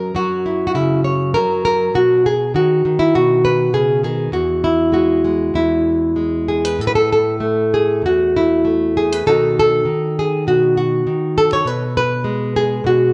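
A woody, full-bodied nylon-string guitar with old strings carries this short folk solo alone, fingerpicked in a classical manner and played with a loose, rubato feel that sounds nostalgic yet hopeful. It sits up front in a moderate concert-hall reverb, while a worn cassette-tape quality adds a warbling pitch drift. The harmony moves from F#7 through B and Eadd9, then a new passage from 6.8 s turns through A5 and B7 to a rootless E/B before the clip is cut from the longer piece.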